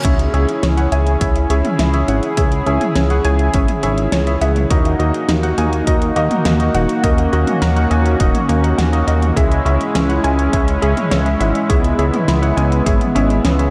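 Nocturnal and nostalgic, this synthwave excerpt moves in a straight four-four feel over a chord cycle of C#m, D#m and back to C#m. Up front, a shimmering, retro pulse-width pad holds sustained chords with chorus and sidechain pumping. A fat, thick analog bass with tube saturation and a filter sweep anchors the low end and pumps too. A very quiet, round analog pluck spins bright arpeggios, and a vintage electric grand piano with a clangy bass adds short stabs trailed by diffuse ambient delay. The drums pair a punchy electronic kick, which stops at 13.0 s, with a pop kit of fat snare, metallic hats and toms, both set in small room ambience, and the mix is soaked in dreamy cathedral reverb.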